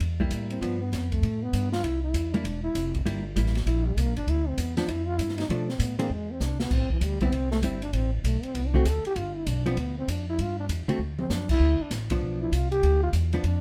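A relaxed swing in four drives this small-group jazz and bop passage, with the eighth notes given a gentle lilt. The pizzicato upright bass sits up front with a woody tone on steel strings, and an acoustic drum kit in a small room adds dark cymbals, a medium-tuned snare and a boomy kick, with drum fills at 6.4 and 11.0 seconds. A clean, picked hollow-body electric guitar, dark and compressed, supplies the accompaniment close to the listener, moving through dominant and rootless seventh chords. A growling trombone enters half a second in and solos to the end, raspy and gritty with scooped notes yet mellow and smooth at the top of its range. Light reverb gives the cut from a longer piece a warm, easygoing air.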